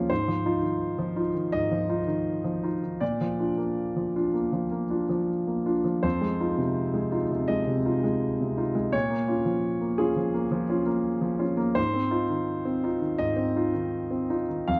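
Rubato timing drifts between 77 and 86 BPM in 4/4 through this reflective, intimate neoclassical minimalist piano piece in F minor, cut from a longer work. A solo grand piano with a smooth, vintage, up-front tone spans F2 to F6 across the 14.8 seconds, moving through Fm7/Ab, Bb, Fm7 and Bbm7 before returning to Fm7/Ab. It is played live in a large studio, where a moderate reverb of about 1.1 seconds gives the close, warm sound a gentle sense of space.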